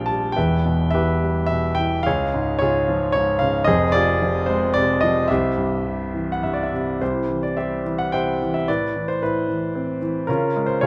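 Warm and sunny in mood, this short classical fragment, cut from a longer piece, features a lyrical solo piano moving in a flexible, rubato three-four time at roughly 99-116 BPM. A clear concert grand carries everything alone from 0.0 to 10.9 seconds, ranging from a deep bass E1 up to A5 and sitting up front with an intimate, polished presence. Its long sustain and audible action noise bring the listener close to the instrument, while a moderate recital hall reverb of 1.7 seconds adds gentle space around it. The harmony drifts colorfully through Em, Db, Fm and C in the opening section, then the passage turns at 7.0 seconds toward a new section touching Amadd9 before settling back on Db. Tuned slightly below standard pitch at A4 = 437 Hz, the recording keeps its warm character throughout.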